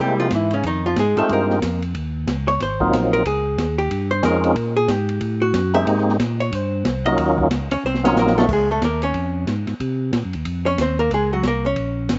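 Soul jazz organ trio at a swinging 183 BPM in Ab major, soulful and bluesy, where a fat, overdriven percussive organ with key click and slow rotary speaker carries the melody until 8.5 s as the key shifts to Db major, a dark, clean, compressed hollow-body archtop guitar solos up front throughout, a second organ holds down the bass with chorus vibrato, and an acoustic jazz kit with boomy kick and dark cymbals adds a fill from 7.8 s, all in a dry outdoor sound with a rolled-off top.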